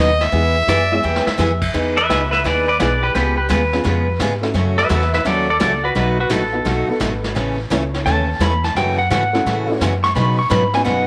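Soaked in a moderate plate reverb, this swinging, playful western swing excerpt opens with a clear, nasal fiddle for its first 1.4 seconds, while a vintage brush kit adds a fill at 1.0 seconds and a bright, twangy pedal steel guitar takes a solo from 1.7 seconds, all over picked acoustic guitar, woody, thumpy upright bass and a detuned, jangly honky-tonk upright piano.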